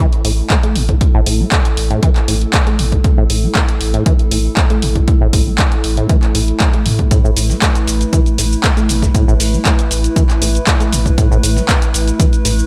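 A rubbery, resonant acid bass riff opens this hypnotic, raw acid house excerpt at 118 BPM, roughened by 12-bit sampler grit and tape echo, as a punchy, up-front electronic kick, a round sine sub bass and an analog drum machine's cabasa, handclaps and hi-hat, re-recorded in a large room, fill out the groove. A dark, warbling square-and-triangle pad holds detuned, nostalgic chords under chorus and reverb, pumping with the sidechain alongside the sub bass. At 7.1 seconds a very quiet, gritty, tape-warm sampler kit adds a compressed snare and hi-hat.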